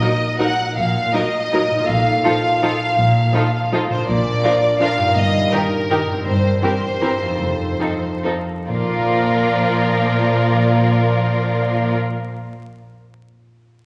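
Classical orchestral ballroom waltz in 3/4 and Bb major, elegant and sweeping, moving with a rubato feel between 130 and 178 BPM and slowing from 5.7 to 8.7 seconds before settling on Bb. A lush, focused violin section carries the melody up front while a more distant second violin line and background violas add vibrato-rich support, and a bright, ringing concert harp spreads fingerpicked arpeggios alongside them. From 0.8 seconds, expressive cellos and a very quiet double bass section supply a bowed bass with portamento, all set in a wet concert hall reverb with vinyl crackle in this fragment of a longer piece.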